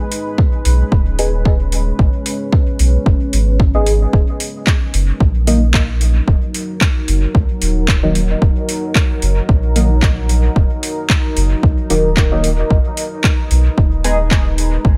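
A deep, detuned sawtooth pad with chorus, built-in reverb and sidechain pumping opens this hazy, nocturnal dub techno excerpt in Eb minor at 112 BPM, soon joined by a deep house kit of handclaps and metallic hi-hats soaked in dub echo, an overdriven, up-front electronic kick, a round, soft sidechain-pumped sub bass, and mellow chord stabs with chorus, phaser, filter sweeps and echo, all moving over Abm and Ebm in a dry, echo-heavy mix.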